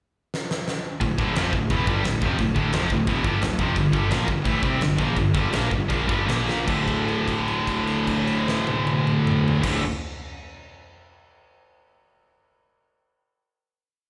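Heavy and epic, this short, complete heavy metal piece opens with a drum fill at 0.3 seconds before the up-front drum kit, with its fat snare, tight kick, crashes and toms, settles into a driving metal groove. A scooped, high-gain guitar leads the power-chord riff up front, a second distorted guitar with slapback echo plays a power-chord riff in the background, and a fuzzy overdriven bass pushes eighth notes beneath, doubling the guitar riff. The whole band sounds like a live gig heard through a club PA with reverb, slowing from 3.8 seconds into a final held chord at 6.7 seconds.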